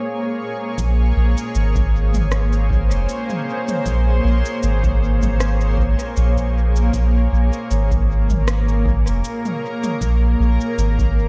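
A hazy, deep ambient dub excerpt in Bb minor at 78 BPM, with a light 16th-note swing, opens on a cloudy, evolving granular pad that holds a Bbm9 chord with a slow attack and a long release, blurred by its own reverb. At 0.8 seconds a round, soft sub bass enters up front, sitting between F1 and Bb1 with a fast attack and sustained tones. It arrives with a very quiet, overdriven analog kick and a faint electronic kit of rim click, shaker and toms, which carries studio reverb and dub echo.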